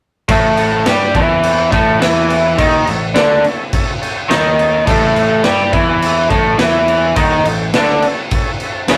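A straight 4/4 garage rock groove at 105 BPM in A mixolydian drives this rowdy, swaggering excerpt, where a bright, double-tracked overdriven guitar riff sits up front over punchy, gritty drums with crash and snare in a pumping stone room, a fuzz-laden picked bass, and a buzzy, heavy-vibrato combo organ holding chords in the background before adding fills at 4.0 and 8.3 seconds, all captured as a rough rehearsal-room recording with tube saturation and light reverb.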